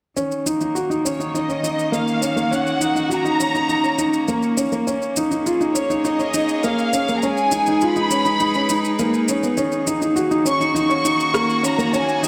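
Piano and strings electronica in Eb minor at 102 BPM, this hypnotic, melancholic excerpt builds throughout, moving through Ebm7, Bbm7 and Abm over a straight 4/4 pulse. A smooth, vintage grand piano repeats an up-front riff through digital delay, while a clear string quartet holds biting, intense sustained chords and a tape-tinged electronic shaker and rim click keep time in a small room. From 1.1 seconds a dark, woody studio violin section carries the soft-attacked melody, and a wet echo chamber reverb wraps the whole mix.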